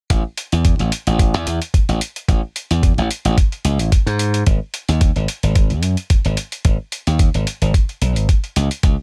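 A thumpy, gritty electronic kick, a tape-warm sampled hi-hat and a glassy slap bass all come in together at 0.1 seconds, setting up a sensual, groovy nu-disco cut from a longer piece at 110 BPM in 4/4 with a light 16th-note swing. The compressed kick sits up front and loudest, and the bright, punchy electric slap bass, also up front, moves between G#1 and G#2. The hi-hat sits further back, and the dry sound carries little reverb through to 9.0 seconds.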